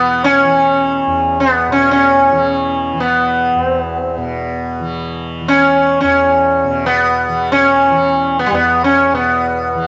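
Solemn and longing, this short Hindustani classical passage unfolds in free time, cut from a longer piece. A sitar carries the melody up front, its plectrum-plucked tone round and buzzing, with sympathetic strings adding a shimmering halo around each note in a low-middle register. Beneath it, a tanpura holds a softly plucked drone that sits well back in the balance, its bright, buzzing strings lending their own glinting resonance. Both instruments play together for the full 9.9 seconds. The sound is that of a home cassette recording in a small room, with modest ambience and a muffled top end that gives the whole passage an intimate, worn character.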